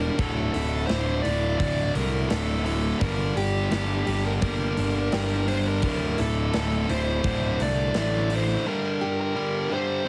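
Up front, a growly fuzz-laden picked electric bass drives this brooding, angsty quiet-loud alternative rock excerpt at 85 BPM, joined by a bright overdriven electric guitar riff, a dark, smooth overdriven lead melody with slapback echo, a fingerpicked steel-string acoustic guitar arpeggiating in the background, and a big rock drum kit with punchy kick and medium-tuned snare, all under light reverb and a heavily compressed radio sound as the chords move from Dsus2 to Gm and back, with the bass dropping out at 8.6 s before a closing G5.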